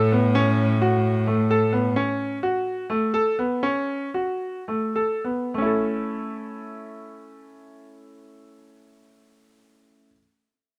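Closely recorded with light reverb, this hopeful, restless fragment of contemporary chamber music in 7/8 opens with a clear, biting bowed cello holding a low bass note with light vibrato until 1.9 s beneath a brilliant, slightly worn grand piano, whose short-sustained arpeggios slow down between 2.0 and 5.5 s before carrying on alone to the close.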